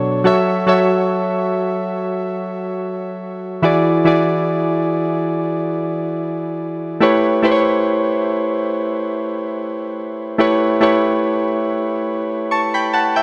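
Longing and sensual, this slow R&B excerpt at 71 BPM in 4/4 with a gently swung sixteenth feel features solo electric-piano-like synth keys, soft and round with a fast attack, decaying tones, chorus and ring modulation, sitting up front in light reverb as the harmony moves from F#m7 to E7 at 3.6 seconds and A7 at 7.0 seconds.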